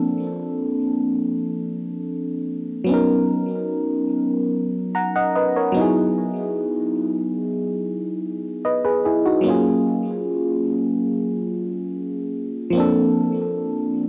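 Moving at a straight, unhurried 73 BPM in 4/4, this romantic, tender R&B excerpt features a solo FM electric piano, glassy and bell-like with a warbling, vintage character, a noise layer, chorus, cassette tape and tape echo, sitting up front in a small room as it drifts through lush major-ninth chords from A#maj9 through Bmaj9, Emaj9 and F#maj9 before returning to A#maj9 at 12.8 seconds.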